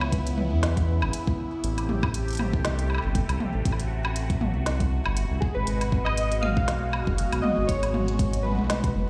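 A round, deep analog bass sits up front in this melancholic, glitchy IDM piece, its dark sawtooth-and-sine tone anchoring a 119 BPM groove in 4/4 with a light swing on the 16ths. An electronic kick adds a deep, tape-warm thump, while an organic-sounding electronic kit supplies smooth hi-hats, a woody snare, toms and woodblock, both re-recorded in a small room. Underneath, a bright, swirling analog pad holds sustained chords throughout, its detuned sawtooth tone slowly evolving through phaser and chorus as the harmony moves from Dbm7 to Am7 at 1.6 seconds and Abm7 at 5.4 seconds. Warbly lo-fi synth keys carry a nostalgic, mellow melody with a chorus and digital delay, sounding briefly at the opening and returning at 5.4 seconds. The whole mix is heard as if played over a big sound system in a bare stone room, with a light reverb and digital ambience around this short fragment of a longer piece.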